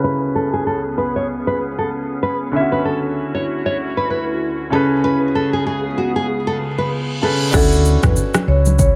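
Joyful and breezy, this short afrobeats excerpt opens with a filtered concert grand piano, a glassy, ethereal FM pad with chorus and its own reverb, and a full-bodied, fingerpicked nylon-string guitar riff with delay, the three colored by a filter sweep over the chords Amaj7/C# and Dmaj9. An electronic reverse cymbal rises in at 6.6 seconds to lead into the second section at 7.5 seconds. There the piano continues as a woody, dark marimba with medium mallets takes a brief melody with delay. A round, punchy hollow-body electric bass sits up front beneath a produced afro-pop drum kit with a deep kick, rim clicks, shaker, toms and crash. Damped, saturated congas played with soft hands sit in the background, and a light small-room ambience holds the parts together.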